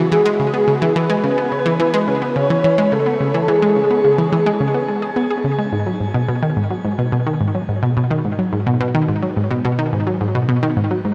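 Awash in a long, shimmering reverb, this short cosmic and mysterious ambient fragment drifts in an even, straight pulse. A soft, breathy, flute-like synth lead with vibrato and a chorus and tape-echo sheen carries the melody only until 5.4 seconds. A round, detuned analog pluck sits bright and up front with its own chorus and tape echo, playing its riff throughout as the harmony moves from C#m to G#m at 5.7 seconds.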